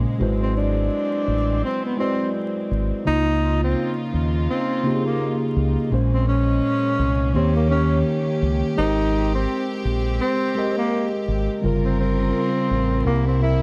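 Lo-fi hip hop in a melancholic, reflective mood, this excerpt from a longer piece moves in 4/4 with a swung sixteenth-note feel. A mellow tine electric piano carries the accompaniment up front, its clean tone heard as if through built-in speakers, while a bowed studio string section floats pure, soft-attacked sustained chords. Underneath, a deep dub fingered electric bass sits round, dark and amped close to the listener. From 0.4 seconds a breathy tenor saxophone takes the solo melody in a jazz style, whispered and intimate, with subtone, light vibrato and a smooth top. The harmony drifts through rich chords such as Ab7alt, Db69, Bbm9 and Abmaj9 before turning to Gm7b5 and C7, framed by moderate studio reverb and a layer of vinyl crackle.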